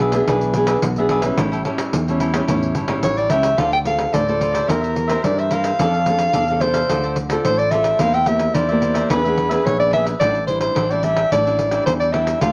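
A moderate studio reverb gives this short cut from a longer samba and choro piece a gentle sense of space, and its mood is yearning and bittersweet in a straight 4/4 feel. The cavaquinho supplies crisp, picked accompaniment, and a small-bodied nylon-string guitar is fingerpicked on fresh strings; both are acoustic and play throughout. Beneath them the fretless electric bass sounds bright and punchy, direct and amped, while the pandeiro adds jingly, soft-handed percussion with a small-room character. At 3.0 s a clear soprano saxophone enters up front as the solo voice, close-miked and played in a jazz style with vibrato and subtone. The harmony moves from E7 to A7, then passes through Dm7, C7/E and F6 before coming back through E7 to an A7sus4.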